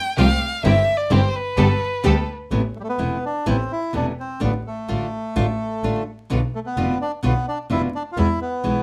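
An expressive bowed violin with vibrato and portamento opens this melancholic, passionate tango excerpt in A minor at 128 BPM with a rubato feel. It plays over fingerpicked classical nylon-string guitar, a biting, earthy bowed double bass and brief stabs from a gut-string studio string section with slapback echo. At 2.8 seconds a reedy, dark bandoneon takes the melody, also touched by slapback echo, while detailed close microphones, light reverb and vinyl crackle frame the sound.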